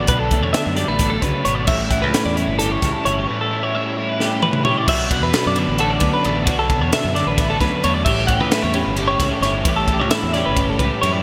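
Driving along in 7/8 at 263 BPM in eighths, this wistful, restless math rock and midwest emo excerpt in B minor sets a chorus-tinged twelve-string guitar's chords under a twangy, bright twelve-string playing high arpeggios, a double-tracked crunchy overdriven riff and a growly fingered bass, while a crisp fusion kit with a high-tuned snare, tight kick and gated reverb lands a fill at 4.2 seconds before the chords shift from Bm9 and A9 to Bm7, all inside a lush hall and bright 1980s-style digital sheen.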